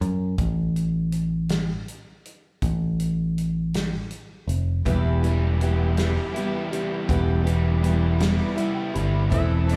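Folk rock with a heartland rock lean, this jangly, nostalgic fragment in a straight 6/8 opens with a round, dark picked bass and a natural country drum kit with a punchy kick, heard as a live gig through the venue's PA with club reverb and small-room ambience. At 4.9 s the band fills out: a bright picked steel-string acoustic guitar with finger squeak and slapback echo, a double-tracked overdriven garage guitar riff, very quiet bowed strings in smooth sul tasto chords, and a clear, very quiet grand piano that later plays a fill. At 9.3 s a twangy, clean electric guitar slips in with a short high second line through analog chorus and slapback echo.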